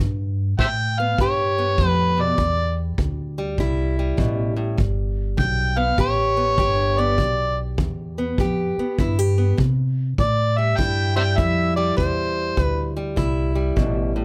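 An amplified, overdriven harmonica solos up front from 0.6 seconds with gritty tongue slaps and scooped, jazz-inflected notes in plate reverb, over a boxy fingerpicked parlour guitar on old strings, a dark, thumpy pizzicato upright bass with gut strings, and a punchy brushed kick drum, in a laid-back, swung acoustic country blues passage that moves between G and C in a natural, nearly dry studio room.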